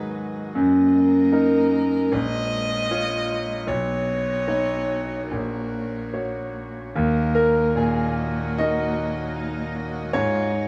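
A bright, up-front concert grand piano with deep bass and long sustain carries the accompaniment in this reflective, melancholic neoclassical excerpt in Eb minor at a rubato 75 BPM, while a single dark violin, played sul tasto with light vibrato and a smooth top, sings an intimate melody over a warm chamber string section holding sustained chords, the whole set in a moderate plate reverb as the music moves into a new section at 7.0 seconds.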